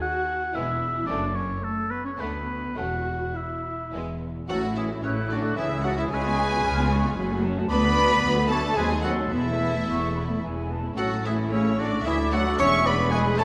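In a lilting triple metre with a flexible, rubato pulse, this quick classical-period movement for symphony orchestra sounds graceful and spirited, a passage cut from a longer piece. A warm solo oboe and the viola section open together, and within 0.5 seconds the violins take the melody with a rich, focused, vibrato-laden tone, supported by clear cellos and dark, expressive double basses that slide with portamento beneath. A second violin line sits quietly in the background, adding body to the bowed chamber strings. At 4.5 seconds the texture broadens as a background clarinet, mellow French horns holding sustained chords with a faintly vintage colour, and dark trumpet stabs join in, followed by an airy, distant flute section with a crisp attack. The harmony moves through minor chords, a diminished seventh and a suspended chord before settling toward cadences, all set in a moderate concert hall reverb.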